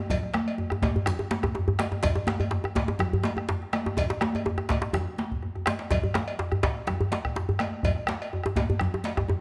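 Powerful and earthy, this short cut from a longer piece is a West African traditional drum ensemble in a straight 4/4 feel. A deep, dark bombo sits close and dry at the bottom. Congas with a bright, high-tuned thin skin are struck with hard hands and carry a compressed, saturated edge. A metallic cowbell rings with a small-room character. Two djembes share a tight, cracking tone: one stays in the background with a vintage, band-limited color, while the other, played with soft hands, sits up front and close from 0.7 seconds. A drum fill breaks through between 5.3 and 5.9 seconds, and a moderate recital-hall reverb gives the ensemble a sense of space.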